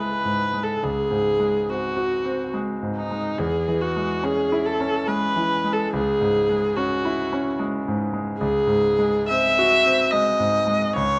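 A clear, focused viola sings a yearning melody with vibrato over a bright concert grand piano from the start, in a solemn romantic classical duo in C# minor at 71 BPM in a rubato 3/4. The piano accompaniment sounds brilliant and polished, with deep bass and short sustain, moving between C# minor and G#7 harmonies while the single bowed viola sits up front a little above it. Close, detailed microphones capture both players in a moderate recital hall reverb through this 11.2-second passage cut from a longer piece.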